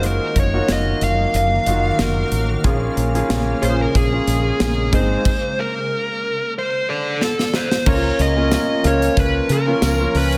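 A dark, overdriven lead guitar carries the melody up front with delay and slapback echo in this romantic, glossy 1980s-style pop excerpt, over a lightly swung groove from a polished, airy studio kit with a tight kick and tambourine, and a round, woody fretless bass. A clear grand piano with audible action noise and long sustain accompanies, while a shimmering, ethereal pad with chorus hovers in the background and a very quiet, funky sawtooth polysynth adds plucky stabs briefly at 2.6 s and again from 7.9 s. A stop at 5.3 s gives way to a drum fill that leads into a new section at 7.9 s, all set in a big arena sound with concert hall reverb.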